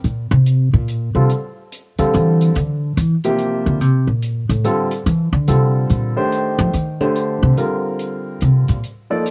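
This modal jazz fragment opens with an upright bass solo and a hi-hat together, the bass plucked, woody and up front with steel strings, the hi-hat soft, smooth and dark with a rolled-off top. At 1.2 seconds a grand piano joins in accompaniment, its natural, up-front tone spreading across a broad register alongside the bass's lead. The bass carries the solo through the whole passage in a swung three-beat metre, giving it a hypnotic yet intense pull. The harmony rests on Gm9 before moving to Cm11 at 6.3 seconds, where the opening phrase starts again. A moderate spring reverb and small-room ambience hold the trio close, and the piece is cut from a longer performance, the bass stopping at 8.8 seconds just before the others.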